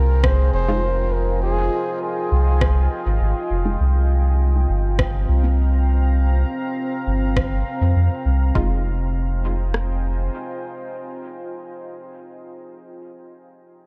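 Spacious and meditative, this ambient dub excerpt opens with a veiled, bucket-muted trumpet singing a brief solo line with light vibrato and dub echo until 3.2 seconds, over a moody, detuned pad swathed in chorus and reverb, a round, soft sub bass sitting up front, a background deep house kit with a deep kick and rim click, an overdriven electronic rim click trailing dub echo, and a very quiet filtered chord stab with a muted pluck, all moving between Fm7 and C7sus4 before returning to Fm7 at 8.6 seconds.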